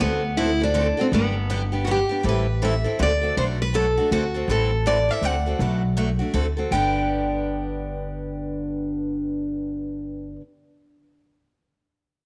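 A warm, up-front picked steel-string acoustic guitar carries the melody in this charming, swinging jazz manouche waltz, taken at a lively 161 BPM in 3/4 with a light swing in G major. A second, brighter guitar with fresh-sounding strings plays the accompaniment, while a woody, thumpy upright bass with dark gut-string pizzicato anchors the low end, all set in a moderate plate reverb. Cut from a longer piece, the passage moves through D7, Am9 and Bm7 changes before settling on G at 6.7 seconds.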